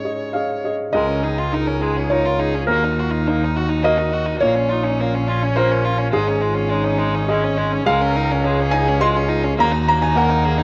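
A felt-muted upright piano, soft, mellow and intimate up front, opens this hopeful, tender neoclassical excerpt in rubato 3/4 at 104 BPM in Db major, alongside a solo bowed violin carrying the melody with expressive vibrato, a soft attack and portamento. At 0.9 seconds a smooth, even viola settles in the background with light vibrato, while a close bowed double bass joins up front on the bass line, as the harmony moves through Absus4, Dbadd9, Ebm and Bbm. A moderate spring reverb and a small room give the sound a gentle bloom.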